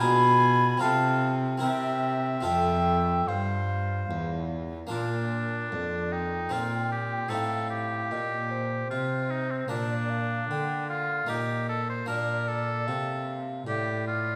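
A clear, up-front oboe sings the melody over a pure, vibrato-tinged baroque flute second line, a round, plucked harpsichord and a nasal, gut-string bowed cello from the very start of this radiant, dance-like baroque-style sonata excerpt in 3/4, all set in a wet recital hall reverb, with the harmony shifting to a new key centre at 4.9 seconds and the music running until it is cut off at 14.4 seconds.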